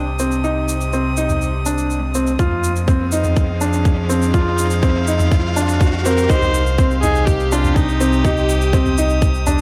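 A melancholic, hypnotic piano and strings electronica piece in C minor at 123 BPM opens with a soft, sul tasto string quartet holding chamber chords over a round sine sub bass that pumps with sidechain, as a mellow, intimate felt-muted upright piano riff with delay and tape-warm electronic shaker and toms join almost at once. A tight electronic kick sits up front from 2.4 seconds while an electronic riser builds in the background and the chords move from C minor to F minor. A dark, floating viola melody with delay enters at 6.1 seconds, just before the drop at 6.3 seconds brings the harmony back to C minor, set in light reverb and digital ambience.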